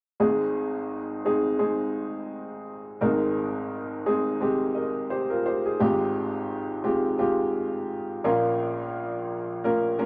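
At 86 BPM in 4/4 with a light 16th-note swing, this uplifting, anthemic pop excerpt in Ab major features a lone clear, woody upright piano with a vintage character, sitting up front and spanning Ab1 to Eb5 as accompaniment from 0.2 to 10.1 s, moving from Ab to Fmadd9/Ab at 5.8 s and Bbm at 8.2 s within a short, wet studio ambience and a softened top end.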